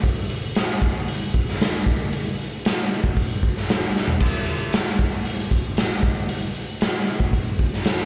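A straight 4/4 rock beat at 115 BPM drives this short passage cut from a longer piece, with a raw garage drum kit carrying the whole 8 seconds. The mood is brooding yet cathartic, built on a punchy kick, a medium-tuned snare, hi-hat, crash cymbal and toms. A drum fill arrives at 3.9 seconds before the groove carries on. The acoustic kit sits up front with a gritty, saturated character and a rolled-off top that keeps it dark. It sounds like a live gig heard through the venue's PA, with light reverb and the bloom of a recital hall around the hits.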